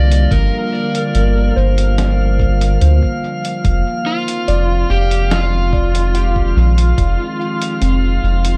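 A muffled, sampler-style drum kit with a medium-tuned snare and hi-hat, soaked in dub echo, sets a straight 72 BPM pulse in 4/4, joined at 0.3 seconds by a thumpy, compressed electronic kick that sits in the background until 7.2 seconds, while a round, deep sub bass holds the front of this meditative, spacious ambient dub fragment in F dorian. Above it, a warbling, nostalgic pad sustains dark chords moving from Gm7 to Fm7 at 3.6 seconds, and an overdriven electric slide guitar carries the melody through analog delay. A gentle FM bell traces soft arpeggios under chorus and phaser, and a glassy texture of drifting sine overtones hangs high on F5, all within a dry but echo-heavy mix.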